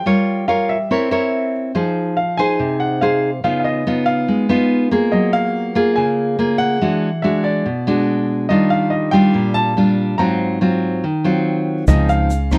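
This melancholic, intimate bossa nova excerpt opens with a fingerpicked nylon-string guitar, full-bodied and deep in a classical manner, carrying the accompaniment up front. Alongside it, a warm baby grand piano with a natural, short-sustained tone plays the melody between D5 and Bb5. The tempo sits at 142 BPM in a straight 4/4, and the harmony moves through rich jazz chords, from Gm7b5 and C7b9 through Fm7, Db9, Gbmaj9 and E9 to Ebmaj9 and Ab13. At 11.9 s, as the progression lands on Dbmaj9, a round, dark fingered electric bass joins up front on a low Db, its foam-muted tone sounding direct and amped. At the same moment an acoustic jazz kit played with brushes enters in the background with a punchy kick, hi-hat and rim clicks, along with a grainy, bright egg shaker set very low. Light reverb and a dark, warm production give the recording a close, intimate character.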